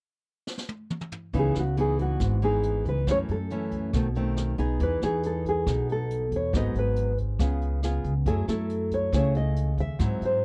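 A dry, close recording in a 1970s studio style, with little reverb, frames this short bossa nova fragment in C# minor at 139 BPM, smooth and melancholic in mood. A jazz brush drum kit opens with a fill from 0.5 seconds, its medium-tuned snare, boomy kick, rim click, hi-hat and toms carrying a natural small-room character. At 1.3 seconds the upright bass and a thumb-plucked nylon-string guitar enter together, the bass woody and pizzicato on steel strings while the guitar supplies classical-style accompaniment from F#2 to G#4. A second nylon-string guitar, fingerpicked and small in tone, takes the melody between F#4 and E5, sitting up front alongside the bass and the accompanying guitar. The harmony moves from C#m9 through F#m7, B7b9, Emaj7, G#m7 and C#7 to F#m9, giving the passage a gently yearning jazz colour before it cuts off.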